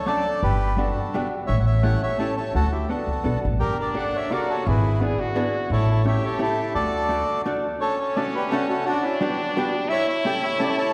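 A reedy, dark bandoneon opens this nostalgic, bittersweet musette waltz up front, carrying the melody over a clean, compressed hollow-body archtop guitar picking out the accompaniment and a woody pizzicato upright bass that stops at 7.2 seconds. At 3.6 seconds a stopped French horn joins with a nasal, metallic second line in a classical style, touched with light vibrato. The lightly swung three-beat feel sits in a wet concert hall reverb heard from further back in the room, in a short fragment cut from a longer piece.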